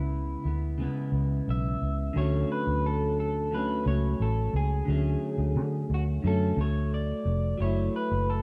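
A dark, round, foam-muted vintage electric bass sits punchy and up front in this laid-back, hazy indie and bedroom-pop excerpt at 88 BPM, beneath a clean, picked guitar bathed in lush chorus and vibrato and a slightly broken-up, compressed, lo-fi lead guitar through a small old amp with subtle chorus and analog delay, as the chords move from C#m7 to Dmaj7 at 2.2 seconds and F#m7 at 7.6 seconds inside light reverb and the rough feel of a cassette home demo.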